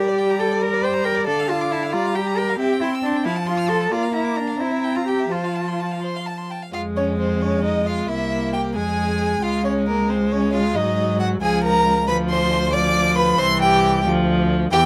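An excerpt of a quick, graceful and lively classical-period string quartet movement in 6/8 at 90 BPM with a rubato feel opens with all four players together, a focused, vibrato-rich first violin carrying the melody over a clear, smooth second violin line, an up-front viola accompaniment and a full-bodied cello bass, moving from F major into F minor at 6.7 seconds, with light reverb and close, detailed miking.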